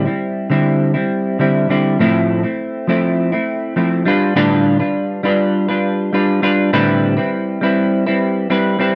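A lone semi-hollow electric guitar sits up front, its clean, hollow-bodied fingered tone thickened by a lush chorus and a warbly pitch drift, moving from a rootless Am7 through Fmaj7/A and G7/A to Am11. This short indie pop excerpt feels lonely and wistful, wrapped in a wet small-room reverb and a dark, warm production across its 8.9 seconds.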